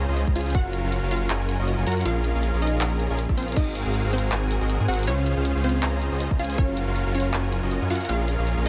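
Future bass at 159 BPM in Db major with a swung, half-time feel, this playful, bright excerpt pairs a huge supersaw chord riff and a thick, saturated detuned saw bass, both pumping with sidechain and sitting up front, against a layered big-room dance kit of crash, ride, hi-hat and handclaps, a hard-clipped electronic kick that lands at 0.3, 3.3 and 6.3 seconds, and a punchy, wave-folded unison pluck melody with tape echo entering at 0.4 seconds in the background, all moving through Dbmaj7, Gbmaj7, Bbm7 and Ab13 in a dry mix.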